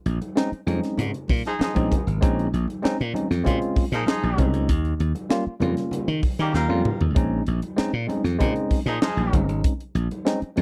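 A straight 4/4 groove drives this cool, funky excerpt of dry, close 1970s-style studio funk, where a tight acoustic drum kit with a high-tuned snare and punchy kick sits up front beside a bright, growly slap bass, soft-handed congas ring distantly in the background, a clean tine electric piano with slapback echo stabs through Bbm11 and Eb9 chords, and a dark, roomy horn section in octave doubling carries a second line from 1.4 to 9.5 seconds, with a drum fill at 6.5 seconds.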